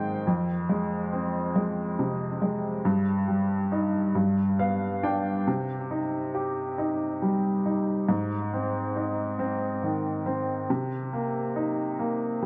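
Dramatic and aching, this short pop excerpt in C minor moves at a slow 46 beats per minute in 6/8 with a straight feel. A lone upright piano carries everything, spanning from F2 up to G5 with a clear, woody tone that sounds worn and slightly detuned. The instrument sits present and up front, its notes ringing with long sustain and trailing through an analog delay. The harmony travels from Fm through Eb/G to G, then settles on Cm before passing through Ab and coming to rest on Cm7, with a fill marking the stretch from 4.2 to 5.5 seconds. A moderate plate reverb and a dark, warm production give the sound a heavy, intimate glow across its 12.5 seconds.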